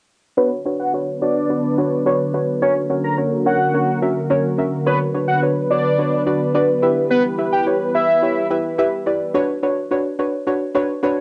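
A straight 4/4 pulse at 107 BPM drives this bittersweet pop fragment in B harmonic minor, where a fat, mellow, detuned sawtooth lead with vibrato, phaser and analog delay carries the melody over a soft, round, dark pluck under a filter sweep and an evolving, warbling pad of resonant, slow-blooming chords moving through Bmadd9, F# and Em, until the pluck carries on alone from 9.3 s to 11.2 s, all set in a wet, small booth with the dulled top end of a home cassette recording.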